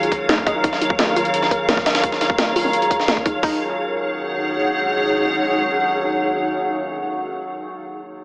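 Drenched in a lush hall reverb and squeezed into an AM radio sound, this tense, mechanical excerpt of dark technical drum and bass opens with three stacked kits. One, an electronic kit up front, pairs a tight, overdriven kick with bright hats. A second electronic kit adds a cracking snare and metallic hats, with low-pass filtering and a tape-warm small-room tone. A gritty, pitched-up breakbeat sampler kit, also up front, brings a high-tuned snare, and filter sweeps run across the drums through the opening section. Behind them, a detuned, lo-fi sawtooth pluck plays warbling arpeggios with chorus and tape echo, swept by its own filter and pumping with the sidechain. A cloudy, blurred granular pad sits bright and full-bodied at the front, while an eerie, inharmonic FM drone sustains mellow chords beneath it with phaser and chorus. The drums and pluck fall away by about 3.6 seconds, leaving the pad and drone to hang alone on a single minor chord until 7.0 seconds.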